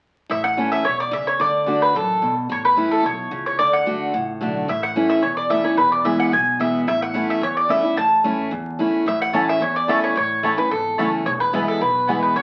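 A straight, even 4/4 pulse carries this rustic, virtuosic bluegrass passage, cut from a longer piece, where a bright, up-front mandolin picks the melody over a full-bodied dreadnought guitar with audible finger squeak and a thumpy, gut-strung upright bass plucked in the background. At 9.3 seconds a second, rounder mandolin adds stabs until 12.2 seconds. The recording has the crackle of a very old 78 rpm record and a wet studio ambience.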